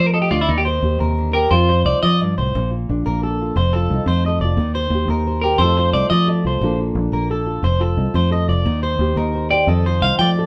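A live-in-one-room sound with moderate studio reverb carries this carefree, danceable highlife cut in a straight 12/8, where a twangy, slightly broken-up lead electric guitar sits up front with short melodic phrases at 0.0, 5.4 and 9.5 seconds, a bright, picked second electric guitar spins arpeggios, a thumb-plucked nylon-string guitar with audible finger squeak fills in the accompaniment, and a round, foam-muted fingered bass anchors a cycle of Eb6, F7 and Bbmaj7 chords.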